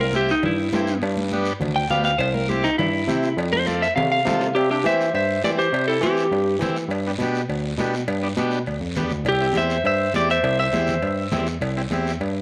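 A clean, picked electric guitar leads this festive, joyful cumbia, sitting up front with a compressed tone, spring reverb and slapback echo as it takes a solo through the opening 4.6 seconds. A barky tine electric piano carries the bass line directly and up front, while a vintage combo organ adds buzzy accompaniment colored by a phaser. Congas with a thick, damped skin sit in the background alongside a raspy guiro and ringing metal-shelled cowbell and timbales, and a drum fill leads into the second section. There, a distant, growling clarinet joins as a second line, its mellow subtone, light vibrato and scooped notes giving a gritty, jazz-style edge, and it drops out with the guitar at 6.6 seconds before both return at 9.3 seconds. The chords move between C, G and F in a small, lightly reverberant room, and the recording is cut from a longer piece.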